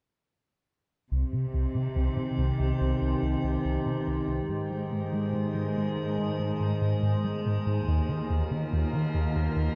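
Relentless and vast, this cinematic excerpt in C minor moves at 71 BPM in a straight 4/4, with a smooth, gliding synth bass riff and a bowed cello section playing the bass line, both starting at 1.1 seconds, over chords moving from Cm to Ab to Ebsus2. At 1.7 seconds a metallic, inharmonic drone enters with eerie, warbling sustained chords, its slow attack and long release carrying chorus and its own reverb. The lush, vibrato-rich cellos and the sawtooth-edged bass sit in a dark production with light reverb.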